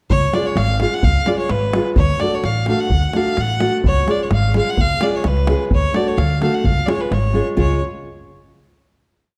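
A biting, bowed violin opens up front with hook phrases sung through light vibrato, joined at once by woody pizzicato upright bass on root and fifth along the main beats and a deep, dry davul two-stick pattern in the background, while fingerpicked nylon-string guitar slips in at 0.3 seconds with off-beat triads, all driving this fiery, virtuosic Balkan wedding-band folk piece at 128 BPM in 2/4 over C# and D chords in a moderate recital-hall reverb with a dark production before closing on a final chord at 7.6 seconds.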